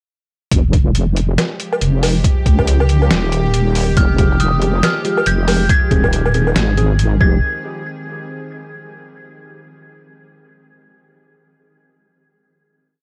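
This short, complete deep dubstep piece rides a half-time groove at 139 BPM in 4/4, with a swung sixteenth feel, built on a gritty, pitched-down sampler kick and a trip hop-style kit of snare, closed and open hi-hats and a low woodblock, both overdriven and entering at 0.5 seconds, with the kit pushed up front. The dark, heavy mood in F minor comes from a saturated sawtooth wobble bass with chorus, its detuned unison body shifting in wobble speed across modulated phrases, under chords moving from Fmadd9 to Eb, back to Fmadd9 and on to Ab. Behind them, a tense, string-like drone enters at 1.5 seconds, holding sustained chords with vibrato, ring modulation and its own reverb, sitting low in the mix. At 4.0 seconds an eerie, inharmonic FM bell with chorus and dub echo traces a free, high melody, joined moments later by hollow, wave-folded organ stabs on the off-beats, also carrying chorus and dub echo. 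The whole drop has a dry, cassette-tape grit before closing on a final hit from 7.4 seconds.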